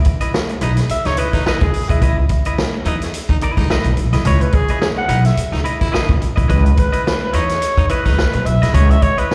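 Hypnotic and sly, this funk excerpt at 107 BPM in C# minor, with a swung sixteenth feel, sits on a single C#m9 chord as a growling, raspy alto saxophone solos with vibrato through plate reverb and slapback echo over a punchy, rolled-off vintage drum kit, a woody, dark upright bass up front, a bright, clean semi-hollow electric guitar sharing the alto's reverb and echo, and a breathy baritone saxophone murmuring in the background from 0.6 to 8.4 seconds, all heard as a live gig through a venue PA in a recital-hall space.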